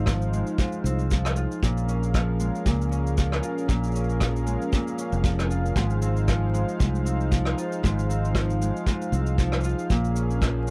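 Dry and dusted with vinyl crackle, this playful, warm folktronica passage sets a ringing, fingerpicked Celtic harp with tape echo over a smooth, detuned sawtooth pad with chorus, a dark, round fingered electric bass and a tight kick drum both up front, and a roomy rim click and cabasa with a rolled-off top, moving with a light swing between two chords.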